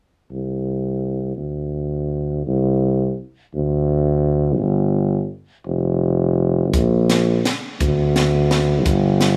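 Cut from a longer alpine folk dance-band piece in a festive, jolly 3/4 at 168 BPM with a rubato feel, this opens at 0.3 s with a mellow solo tuba, up front and played in a classical style with light vibrato and a smooth top across its low bass range, before a compact, dry acoustic cocktail drum kit of hi-hat, punchy kick and high-tuned snare joins at 6.7 s, all with barely any reverb.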